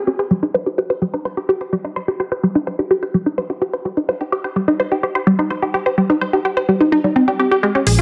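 Dark and melancholic, this melodic techno excerpt at 127 BPM in 4/4, tuned to A4 = 436 Hz, opens on a lush, punchy unison pluck playing arpeggios over a C minor chord, run through phaser and tape echo with a filter sweep across it until 7.6 s. At 7.9 s a fat, saturated analog bass on Bb1 and a deep house kit of dark, high-passed hi-hats and toms arrive for a brief moment. A moderate plate reverb and plenty of echo give the mix a spacious, shadowy depth.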